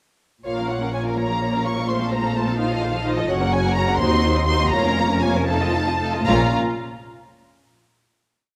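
A wet scoring-stage reverb with a 1.6-second decay surrounds this con sordino string orchestra, giving a short, complete classical-period movement in Bb minor a veiled, lush glow. The piece is quick yet rubato, in 6/8 at 74-86 BPM counted in dotted quarters, and its mood is restless and dramatic. Up front, a close symphonic violin section carries the melody high in its register with vibrato, while a second violin section and the violas play a rocking two-note figure and sustained chords in a dark, soft-attacked blend. A chamber-sized cello section holds a sustained bass line, and the double basses, warm and bowed, double that line beneath. The harmony moves from Bb minor through F over Bb, Gb and a diminished chord before F7 leads to a closing Bb minor chord at 6.3 seconds, which rings out in the reverb until the piece ends around 7.8 seconds.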